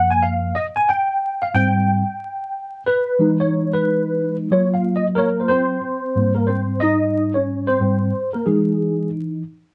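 A worn, slightly out-of-tune tine electric piano plays solo from the opening through 9.4 seconds, clean and up front through a combo amp and treated with an ensemble chorus. The smooth hip hop fragment has a swung 16th-note feel in 4/4 and drifts through lush major-seventh and ninth chords. It sits in a dark production with vinyl crackle and a moderate small-room reverb.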